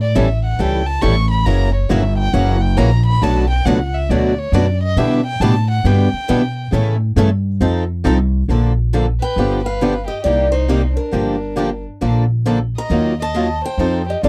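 A lively 4/4 swing at 137 BPM, with swung eighth notes, drives this short fragment of acoustic string jazz manouche. The upright bass sits up front, its gut strings giving a dark, thumpy, woody pizzicato pulse. Two picked guitars fill in the accompaniment: a boxy swing-style guitar with fresh strings, also up front, and a bright steel-string parlour guitar in the background. A single violin opens with a solo until 8.5 seconds, played close and intimate with an airy sul tasto bow, soft attack and light vibrato, then carries on as a second line. The harmony moves through a string of mostly seventh chords before settling into Bb major at 8.5 seconds, and at 9.2 seconds an old ladder-braced guitar enters with the picked melody, its aged strings lending a warm tone. The sound is dry and close, like a 1970s studio session with little reverb.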